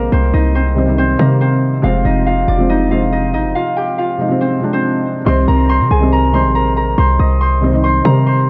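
Drill hip hop with a dark, tense half-time feel pairs an up-front, fingerpicked concert harp melody, ringing and filtered with digital delay, against a soft, felt-muted upright piano accompaniment and a punchy, heavy 808-style bass with a noisy, fast-attack edge, all in light small-room ambience. In C minor, the chords move from Cm to Fm, with a break at 3.6 seconds before a new section returns to Cm at 5.3 seconds in this short cut from a longer piece.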